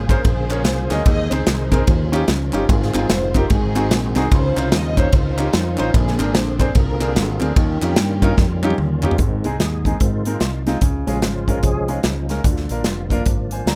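A lush, bowed string section opens this reverent, hopeful slice of uptempo gospel, carrying the melody with expressive vibrato over a clear grand piano, a fingered electric bass and the reedy tonewheel organ sitting in the background with its slow rotary speaker, chorus vibrato and key click. Almost at once a punchy, up-front studio drum kit joins with a swung feel, its pumping room sound and medium-tuned snare driving the groove while crisp, close group handclaps add a human touch behind it. The piano's deep bass and long sustain fill out rich extended chords as the strings sing over the top. A drum fill at 8.4 seconds leads into a new passage at 9.2 seconds, where the bright organ takes a solo and a very quiet, mellow French horn section holds tight sustained chords alongside. The rough, dry demo mix keeps the sound close and direct, and the passage is cut from a longer piece.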